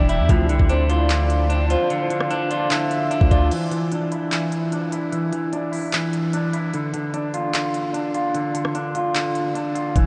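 A slightly broken-up electric guitar, picked and compressed through a low-pass filter and analog delay, carries arpeggios through this dark, hard-hitting trap excerpt at 149 BPM in a half-time feel, all of it soaked in a vast, dreamy reverb over Dm7 and Dsus2/E harmony. Up front, a deep sine 808 bass sustains under the opening bars, and a tape-tinged trap kit brings a knocking kick, crisp hats, handclaps, rim clicks, crash and 12-bit sampler grit, while a moody detuned pad and a round, octave-layered synth lead with chorus and vibrato hover in the background until 3.5 s. A glossy, retro chorused polysynth stab flickers barely audible near 0.3 s, and from 3.5 s a break leaves the guitar and drums before the bass briefly returns at 10.0 s.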